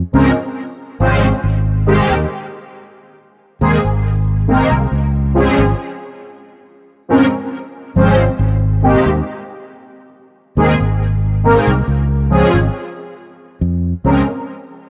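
A mellow synth brass, round and detuned with a sub octave and a filter sweep, carries the chords through ensemble chorus and analog delay in this dreamy, woozy vaporwave excerpt in Ab major at 69 BPM, with a light 16th-note swing. A growly, punchy fingered electric bass sits up front beneath it as the harmony moves between Dbmaj7 and Abmaj9, all bathed in light digital ambience. The sound carries the warble of worn cassette tape with drifting pitch, and a fade-out begins at 13.0 seconds.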